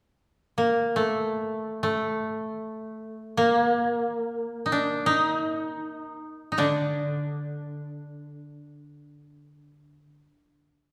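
Calm and austere, this short passage of Japanese traditional chamber music unfolds in free time and is cut from a longer piece. A koto carries the melody from 0.6 seconds, moving between A3 and Eb4 with a warm, woody tone from fingerpicks, placed up front and close. At 6.6 seconds a second koto joins as a quieter accompaniment, sounding a bright D3 until 10.0 seconds. Both instruments are captured close and dry, yet they sit within the reverberant ambience of a recital hall or church, whose 1.7-second decay lends the sparse plucked notes a spacious halo. The whole fragment forms a single section, restrained and contemplative.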